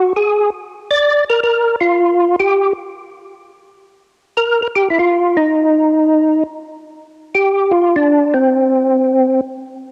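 Swinging along at 161 BPM in 4/4, this bluesy, late-night jazz fragment in G minor features a lone percussive tonewheel organ soloing up front from 0.0 to 9.4 seconds between C4 and D5, its fat, clean tone marked by third-harmonic percussion and key click and colored by slow rotary speaker, chorus vibrato and cassette tape, all set in light reverb on a home cassette recording.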